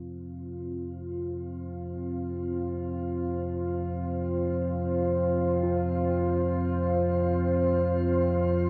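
In free time, this ominous, cavernous ambient fragment, cut from a longer piece, opens with a deep rumbling drone fading in beneath a dark, detuned pad of sustained chords treated with chorus and a shimmer reverb. At 5.6 seconds a very quiet bronze singing bowl joins, its metallic, slowly beating ring struck with a felt mallet. The whole is steeped in a huge wet reverb with a 7.8-second decay, giving a dark, warm production.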